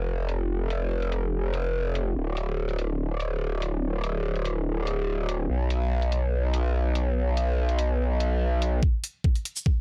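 Chaotic and aggressive, this heavy wobble dubstep passage, cut from a longer piece, moves with a half-time feel in 4/4. A growling, wobbling bass dominates from the start and sits up front. Its saturated sine tone runs through a formant filter, overdrive and chorus, with a fast attack and a compressed, sustained body. Layered electronic hi-hats and shaker enter at 0.3 seconds, the bright hats filtered and tucked well beneath the bass. The bass stops at 8.8 seconds, where an up-front, knocking, tape-warm electronic kick drum joins the hats for the closing moment, all in a dark, dry production with little reverb.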